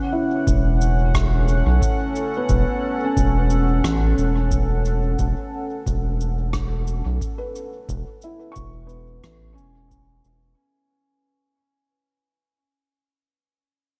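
Hazy, deep ambient dub at 89 BPM in 4/4, cut from a longer piece, where a dark, detuned sawtooth pad with chorus and reverb holds an A6/E chord, a felt-muted upright piano with tape echo plays soft vintage arpeggios, a round analog bass with tube saturation sits up front, an analog electronic kick drum lands in a small room, and a natural-sounding cabasa and rim click carry dub echo, before a fade-out starting at 3.4 seconds leaves the piano ringing alone until 12.6 seconds.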